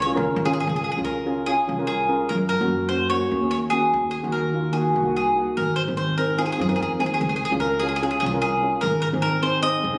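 Sunny and festive, this calypso excerpt puts a woody, double-strung picked mandolin melody up front, while a dark, shimmering steel pan struck with medium rubber sticks joins at 0.1 s as accompaniment and a growly pizzicato upright bass on steel strings anchors the Db, Gb, Ebm and Ab changes, the whole captured on a phone inside a reverberant recital hall for a compressed, roomy sound.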